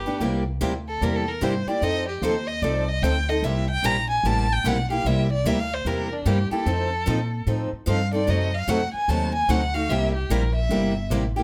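Acoustic string swing in the jazz manouche style, lively and playful, where a warm, expressive bowed violin with vibrato and portamento takes an up-front solo over C7, F7 and F#dim7 changes, backed by a woody, thumpy pizzicato upright bass and two bright picked steel-string guitars, one boxy and the other set back with audible finger squeak, all in a moderate studio ambience with plate reverb on the violin, in this excerpt cut from a longer piece.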